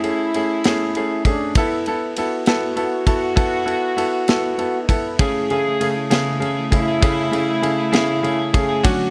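Tender and swaying, this brief six-eight pop ballad excerpt in A major moves at 66 BPM, with a clear, up-front concert grand piano carrying the accompaniment over deep bass, a mellow French horn section with light vibrato and soft attack singing a second line, and a punchy acoustic studio drum kit of kick, ride and snare with a rolled-off top, all in light reverb, until a bright, twangy twelve-string electric guitar slips in behind them with picked arpeggios at 5.2 seconds.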